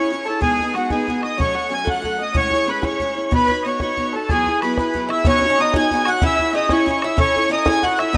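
Cheerful and bright, this short cut from a longer Celtic folk jig moves at 124 BPM in 6/8, with a reedy, up-front accordion carrying the melody over a very quiet, dark erhu second line with light vibrato and portamento, a boxy picked steel-string acoustic guitar accompanying on chords such as G#m, Amaj7 and C#m, a boomy bodhran joining at 0.4 s, and a mellow, metallic Irish bouzouki with double strings adding a second line from 5.1 s, all set in a lush hall reverb within a rough home demo mix.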